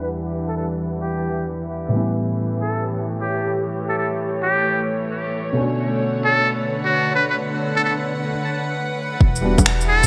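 Future garage with a rainy, melancholic mood, where a buzzy, breathy metal-muted jazz trumpet sings over a felt-muted upright piano with audible action noise and a dark, intimate sul tasto string section, all wrapped in a filter sweep and bright 1980s-style digital sheen, until a round sine sub bass and a punchy overdriven kick arrive at 9.2 seconds, joined at 9.4 seconds by up-front shaker, bongos and finger snaps.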